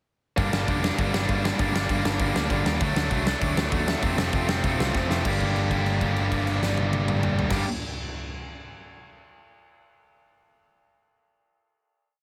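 A heavily compressed, radio-ready sound with light reverb frames this short, raw and angry punk rock piece in G minor, charging along at 197 BPM in a straight 4/4. A big rock drum kit with a natural, big-room character sits up front, pairing a punchy kick and fat snare with bright cymbals in a two-step groove. Two distorted guitars hammer out driving eighth-note barre chords from 0.4 seconds: a tight guitar sits up front, while a second, compressed guitar sits further in the background. A picked electric bass, growly and amped, drives eighth notes underneath as the verse moves from G minor through D and F. A drum fill at 4.9 seconds sets up a final G minor chord at 5.3 seconds, held until the piece ends.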